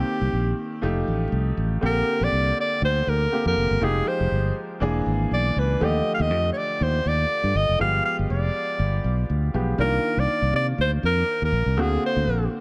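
A breathy alto saxophone and a bright baby grand piano open this polished 1980s jazz-funk pop excerpt together, with a fingered electric bass joining at 0.2 seconds. The mood is urban and nocturnal, carried by a lightly swung sixteenth-note feel in four. Up front, the saxophone sings the melody in a whispered, intimate pop style, its soft attack, scooped notes and vibrato giving the clear tone a close, confiding character. The piano accompanies with a brilliant, natural sound and long sustain, touched by a subtle chorus, while the round, punchy bass sits forward with a dark, direct, amped edge. Rich harmony moves from Cm7 through chords such as Ebmaj9#11 and G7b9 before landing on D7b13, all set in light reverb with small room ambience, and the passage is cut from a longer piece at about 12.6 seconds.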